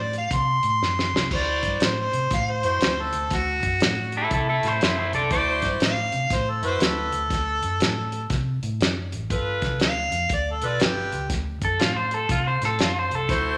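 A clear, overdriven harmonica carries a soulful, swaggering electric blues shuffle over a round, foam-muted bass and a warm soul drum kit with a fat snare, whose fill at 0.8 s brings in bright saxophone section stabs at 1.3 s, while a twangy guitar at the edge of break-up adds a second line from 4.2 s and returns at 11.6 s just after the harmonica stops, all washed in a large studio reverb in this cut from a longer piece.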